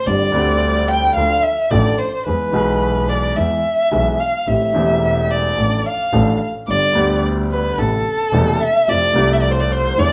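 Tense and dramatic, this tango in A minor moves at 109 BPM in 4/4 with a rubato feel, and it is cut from a longer piece. A dark, up-front bowed violin takes a solo from the very start, singing with expressive vibrato and portamento between A4 and G5. Beneath it, a woody, polished upright piano supplies the accompaniment, while a bowed double bass adds a biting, boxy low end with an airy bow and its own vibrato. The harmony passes through Gsus4, Dm and E before settling on Am7 at 4.5 seconds, then moves on through Dm/A, G and Amadd9 to close on Fmaj7. The trio plays live together in one room, wrapped in a moderate large-studio reverb.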